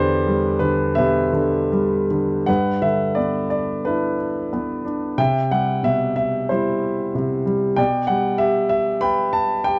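The rhythm is free and rubato, a 4/4 pulse that drifts between 75 and 98 BPM and lets each phrase breathe. This moody, bittersweet excerpt of lyrical classical solo piano lasts just under ten seconds, with a concert grand tuned slightly high to A4 = 445 Hz playing alone from start to finish across a range of E2 to B5. Its tone is intimate, smooth and vintage, with a deep bass and audible action noise, and it sits up front in the mix. The harmony opens on Em7, and at 2.5 s a new section begins on G6, moving to Cmaj7 and then settling on Gmaj13/B at 7.8 s. Light reverb and a dark, warm production give the piece a close, intimate atmosphere.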